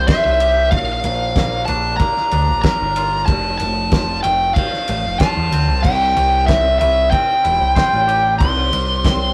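This rough rehearsal-room recording carries a moderate small-room reverb, giving a dark, mysterious slice of psychedelic rock cut from a longer piece in a straight 4/4. Up front, a fuzz lead guitar carries the melody with a distorted, picked tone that sits high in the mix. Beneath it, a growling picked electric bass, overdriven and amped, anchors the low end, while a bright, clean, twangy electric guitar plays a compressed riff through a phaser further back. A damped 70s drum kit sounds dry and smooth, with a fat snare, tight kick, crash and ride cymbals, and a rolled-off top. The harmony moves from C to Bb at 0.7 seconds, settles on F at 3.3 seconds, and returns to C at 5.8 seconds.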